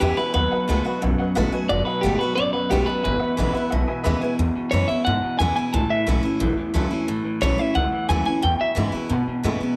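A straight 4/4 pulse drives this retro, upbeat rockabilly clip at 178 BPM in E major, cut from a longer piece. The upright bass sits up front with a woody, growly pizzicato tone, while a picked dreadnought acoustic guitar adds full-bodied accompaniment underneath. An electric guitar through a small old amp plays a low, slightly broken-up riff bathed in spring reverb, and a clean, compressed electric guitar carries the twangy, up-front melody through analog delay until 8.8 seconds. A detuned, jangly honky-tonk upright piano fills in the upper register before dropping out at 4.3 seconds. The harmony moves from B7 to E, then A and back to E, and a moderate echo-chamber reverb with a small-room feel gives the whole mix a vintage sense of space.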